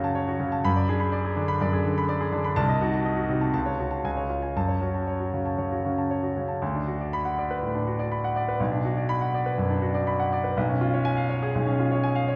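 A lush recital-hall reverb surrounds this passage, heard from further back in the room, while the clear, smooth grand piano still sits up front with a vintage character. It is a passionate, agitated virtuoso piano study in F# minor, played solo at 122 BPM in 4/4 with a rubato feel, ranging from B1 to B5 across a brief cut from a longer piece. The opening passage moves through diminished harmonies back to F# minor, and at 6.6 seconds a new section turns toward D6, Bm and C#7/B.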